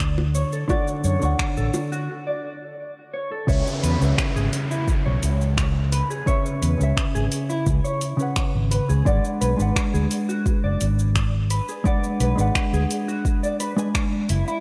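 A straight 4/4 groove at 86 BPM comes from an overdriven electronic kick and a layered deep house kit of cabasa, finger snaps and hi-hat, with low-tuned bongos heard briefly in the background near the start, while an up-front, round fretless bass anchors this smooth sunset chillout passage. A dark, compressed hollow-body jazz guitar accompanies through tape and slapback echo, and a mellow electric guitar plays clean arpeggios through analog chorus and echoes, as the harmony moves from Dmaj7 to C#m7 at 3.5 s and G#m7b5 at 9.1 s. After a short break, an electronic downlifter appears between 3.5 s and 9.1 s, and the mix sits in a lush hall reverb with a big arena sound.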